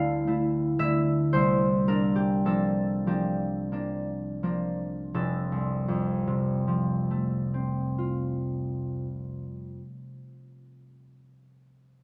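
Set in 6/8 with a free, rubato feel, the music slows down through its first 5.1 seconds before settling into a new passage. This short classical excerpt is cut from a longer solo harp piece and carries a graceful, dreamy mood. The concert harp plays alone for the full 10.7 seconds, spanning a broad range from F1 up to A5. Its thumb-plucked tone is warm and ringing, placed up front by close, detailed microphones under a light reverb. The harmony drifts from Dmadd9 to C9sus4 and then opens onto Fadd9 as the second passage begins, with the instrument tuned slightly above standard pitch at A4 = 441 Hz.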